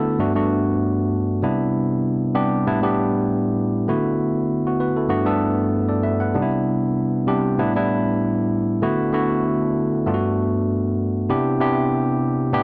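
A 4/4 groove at 97 BPM with a light swing on the sixteenths carries this smooth soul fragment in D mixolydian, cut from a longer piece. A lone tine electric piano plays throughout, bright, barky and clean through a combo amp, sitting up front in a dark, warm mix with light reverb. It cycles through Gmaj9, Cmaj9, A9sus4 and D69, with a new section arriving at 8.8 seconds before the passage breaks off at 12.6 seconds.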